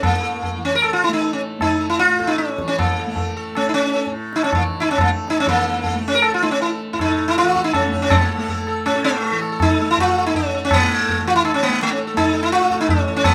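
A sitar, tanpura drone and high-tuned tabla sound together from the opening of this meditative, devotional Hindustani classical passage in raga Puriya Dhanashri on A, set in 7/4 at 151-167 BPM and gradually speeding up. The up-front sitar carries the melody with a bright, buzzing, plectrum-plucked tone and shimmering sympathetic strings, over a softly plucked tanpura drone and ringing tabla. A small, reverberant room surrounds the trio, and the music moves into a new section at 5.5 seconds in this short cut from a longer piece.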